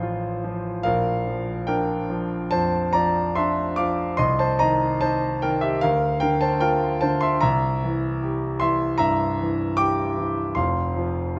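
Lyrical and hopeful, this brief excerpt of a romantic character piece for solo grand piano unfolds with rubato in 4/4, its polished, present tone ranging from deep bass to bright treble and set up front by close, detailed microphones within a moderate concert hall reverb as the harmony moves from F over A through B-flat, C minor seventh and C seventh before settling on F at 10.6 seconds.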